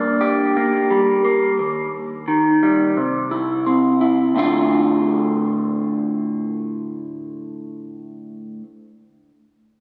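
A straight 4/4 pulse at 87 BPM carries this brooding, cinematic rock passage in D minor, cut from a longer piece. A single electric guitar through a small old amp plays picked arpeggios from 0.0 to 8.6 s, its dark, slightly broken-up, lo-fi tone sitting up front with phaser, tape echo and slapback echo, moving through Gm, Eb and C before settling on Dm at 4.4 s. A lush hall reverb with a 2.0-second tail gives the whole recording a big arena sound.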